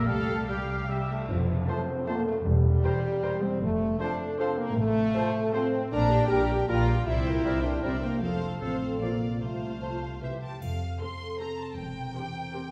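In a straight three-beat lilt, this playful, whimsical and quirky film cue, cut from a longer piece, sets a violin section's smooth vibrato melody above a clear oboe, airy flutes and a lush second violin section on supporting lines, while a mellow bassoon, expressive violas, ringing thumb-plucked harp arpeggios, intimate cellos and a dark double bass section with portamento fill the lower layers beneath tight, up-front French horn chords, and dark tam-tam and triangle strokes arrive at 1.3 s and again at 10.6 s, giving a magical sheen to the reverberant scoring-stage space heard from further back in the room.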